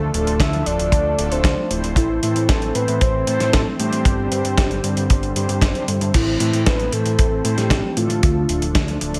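A straight 4/4 pulse at 115 BPM drives this melodramatic, nostalgic italo disco excerpt in A minor, where a dry, tight acoustic kick sits up front from 0.4 seconds beside a gritty, compressed sampler-style soul kit with a medium-tuned snare, hi-hat and crash in gated reverb, while a fat, thick sawtooth bass with tube saturation anchors the Dm, Am and Gsus4 changes beneath brassy, detuned synth stabs with chorus and phaser, a smooth slow-attack pad with chorus in the background, and a round, dark octave-layered synth lead carrying the melody with vibrato, chorus and tape echo.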